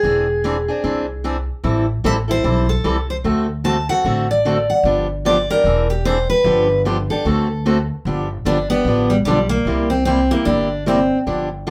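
Swinging and charming, this short cut from a longer jazz manouche piece moves with a lively swung feel in 4/4 through a chain of mostly dominant and augmented chords in a moderate club reverb. A bright, full-bodied jumbo steel-string guitar carries the picked melody up front until 11.2 s, while a boxy parlour guitar picks the accompaniment. A woody, thumpy upright bass with gut strings plays pizzicato beneath them in a dark register.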